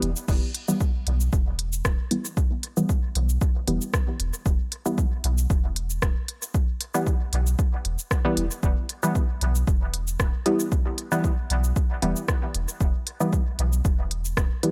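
Cavernous and nocturnal, this dub techno passage, cut from a longer piece, rests on a single E minor chord. Muted, detuned sawtooth chord stabs pluck through chorus, phaser and dub echo, pumping with the sidechain above a round, soft sub bass that also breathes with it. A punchy electronic kick enters at 0.3 seconds up front, and a deep house kit of cabasa, crash cymbal, smooth hi-hats and rim clicks sits behind it in a dry mix.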